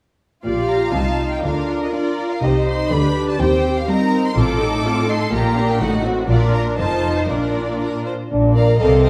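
Spirited and graceful, this short cut from a quick classical-period movement for symphony orchestra moves at 123 BPM in 2/4 with a rubato feel, set in Bb major and tuned slightly low. The violin section carries the melody in a clear, focused voice with vibrato, while a second violin line beneath it sounds smooth and even. The viola section fills in the accompaniment with a lush, up-front tone, and the cellos and double basses share the bass, the cellos rich and somewhat distant, the basses focused. The harmony moves through Bb, F7 and C minor, with a passing Adim7 before settling on Bb around 7.3 seconds. Near the close, at 8.3 seconds, a mellow French horn section enters with soft-attacked sustained chords, all of it resting in the reverb of a recital hall.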